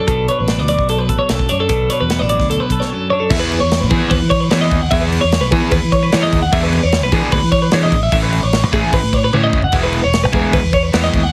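A heavily compressed, radio-ready mix with light reverb carries this wistful, bright math rock and midwest emo cut from a longer piece, where a twangy twelve-string electric guitar opens with accompaniment until 3.3 seconds while a second bright twelve-string spins high arpeggios throughout, a fingered electric bass and a punchy, up-front studio drum kit drive the straight 4/4 groove with a drum fill at 9.3 seconds, and a warm, double-tracked overdriven semi-hollow guitar riff enters at 3.3 seconds over chords moving from Bm9 through Emaj7, E7 and Amaj7.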